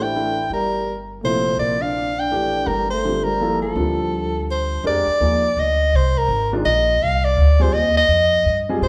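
Modal jazz in a brisk 3/4 at 166 BPM, swung on the eighth notes, with an intense yet cool mood; the passage is cut from a longer piece. A clear soprano saxophone carries the melody up front, close-miked, with vibrato and a subtone edge. Beneath it, a breathy trombone with a soft attack and light vibrato plays a second line until 4.4 s. A dark, mellow grand piano accompanies with an intimate sound, its action noise audible. A woody pizzicato upright bass anchors the low end. The harmony moves from A7sus4 to Gm11 and then settles on Fm11 at 4.8 s, where the music turns to F dorian, and the whole band plays live together in a large studio with generous reverb.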